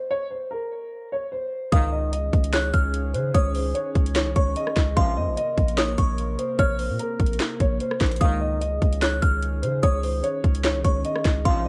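Light reverb and a digital ambience surround this dreamy, wistful trap excerpt, with lossy compression artefacts audible throughout. It moves at 148 BPM in 4/4 with a half-time feel in Db major, and opens with a dark, boxy concert grand piano playing the melody alone through a low-pass filter, up front in the mix. At 1.7 seconds the full arrangement arrives: an electronic trap kit with a hard-clipped kick, sharp snare, metallic hats, handclaps and rim clicks, roughened by vintage 12-bit sampler grit, over a deep, mellow 808-style sine bass with long, decaying notes. A delicate, tinkling FM bell adds a high second line with chorus and tape echo, while a clear brass section punctuates the chord changes with tight classical-style stabs carrying a light vibrato. From 2.2 seconds a warbling, nostalgic tape-like pad of detuned sawtooth and triangle tones sustains the harmony with a slow attack, chorus and its own reverb. 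The chords drift between Bbsus2, Dbsus2 and Bbmadd9, giving the piece a hazy, suspended character.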